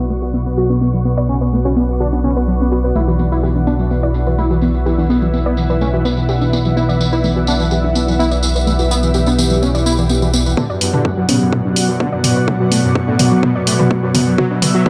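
Dramatic and driving, this melodic techno cut in B minor moves at 126 BPM, opening on a bold, nasal unison lead with vibrato over a lush pad, a soft round pluck arpeggio, an ethereal airy pad and a fat analog bass, all pumping against the sidechain while filter sweeps move across the lead, pluck and pad, and a jingly tambourine with tape echo joins at 3.0 seconds as the harmony moves from Bm to Em7/B. At 10.6 seconds the bass and tambourine drop out and a build-up arrives with a punchy electronic kick, a house kit of hi-hats and toms with a drum fill, and a smooth supersaw second line under a filter sweep. At 11.3 seconds brassy analog synth stabs steeped in tape echo are added, all within an echo-heavy mix, a moderate plate reverb and a low-passed top end.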